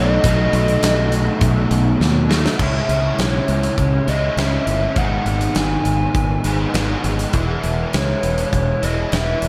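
Dreamy and hazy, this shoegaze and dream pop rock passage, cut from a longer piece, moves at 101 BPM in a straight 4/4. A dark, double-tracked overdriven guitar riff sits up front with ensemble chorus, under a reedy, woody FM lead carrying the melody with a soft attack, vibrato, chorus and analog delay, while a growling fingered bass adds bright, overdriven grit beneath. A big-room acoustic drum kit with a punchy kick enters at 0.2 seconds and plays a fill from 2.0 seconds into a new section moving through C#m, G#m and E6, all bathed in a reverb-soaked plate sound.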